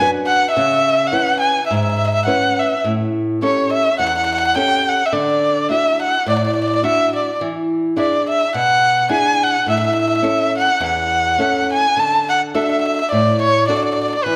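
A dark, woody erhu sings the melody with vibrato and portamento over a small, fingerpicked nylon-string guitar, complete with finger squeak, from the opening second of this romantic, lively Italian serenade in A major at 105 BPM with swung eighths, both instruments up front in a recital hall reverb, as the chords move through A7, Dadd9 and E7 before a new passage settles on D at 12.0 seconds in this 14.4-second excerpt.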